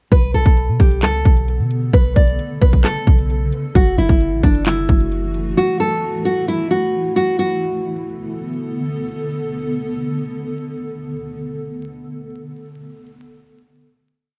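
A fingerpicked nylon-string guitar leads this short, melancholic trap piece, playing a looping melody from 0.1 s that repeats like a sampled loop, its classical tone dulled by a low-pass filter and marked by audible finger squeak. Up front beside it, an electronic trap kit lays down a bouncy half-time beat at 132 BPM in B minor, with a hard-clipped kick, metallic sixteenth-note hi-hats and handclaps. A deep, boomy 808-style bass with a clean sine tone follows the kick in long sub-bass notes with pitch slides, moving from Bm7 to F#m7 at 3.8 s. Drums and bass drop out around 5.5 s, and a blurred, detuned granular pad, present since 1.2 s with its own reverb, carries the harmony into the closing Bm7 chord from 7.4 s to the end. The dark production adds light reverb and a layer of vinyl crackle across the piece.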